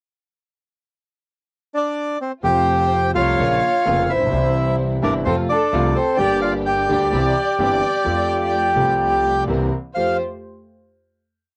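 Uneven groups of three and two eighths drive this nostalgic, passionate tango in F major at 128 BPM in 4/4, played with a rubato feel. A reedy, close-miked bandoneon sings a song-like motif alone from 1.7 s, partly doubled in octaves. At 2.4 s, thumpy pizzicato upright bass on gut strings, a concert grand piano with deep bass and long sustain, and lush bowed stabs from a dark studio string section in the background join it, and from 2.5 s a distant chamber violin section adds an earthy harmony line mostly in thirds. The piano and both string sections carry a cassette-tape tint, and the home cassette recording sits in light reverb before ending on an Fadd9 chord at 10.0 s.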